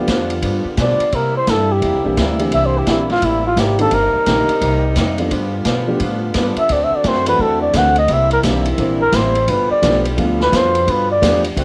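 A swung eighth-note feel at 172 BPM in 4/4 drives this energetic, swinging big band excerpt. The drum kit sounds distant and roomy, with hi-hat, a ride in dark cymbal tones, a medium-tuned snare and a boomy kick. A woody, thumpy pizzicato upright bass anchors the low end beside a mellow baby grand piano whose action noise is audible. A boxy, picked acoustic guitar sits in the background with finger squeak, and a tight saxophone section holds smooth, sustained chords with light vibrato behind it. At 0.8 s the bucket-muted trumpet steps up front for its solo, veiled and vintage in tone, with vibrato and scooped notes over harmony moving from G7 through C7, Cm7 and D7 and back to G7. Cassette tape colours every part except the bass, while plate reverb lends the piano, guitar and trumpet extra space in a moderately reverberant room, rounding out this home recording.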